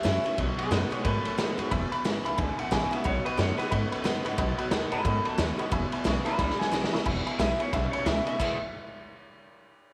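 Rowdy and rollicking, this swung 180 BPM rockabilly clip in E major pairs a twangy, slightly broken-up electric guitar melody with tape echo against a second electric guitar riff with subtle chorus, a bright picked steel-string acoustic guitar, a thumpy pizzicato upright bass on gut strings, a gritty, saturated garage drum kit up front with a punchy kick and a fill at 6.4 seconds, and a detuned, jangly honky-tonk upright piano that enters at 1.7 seconds, all in light studio reverb.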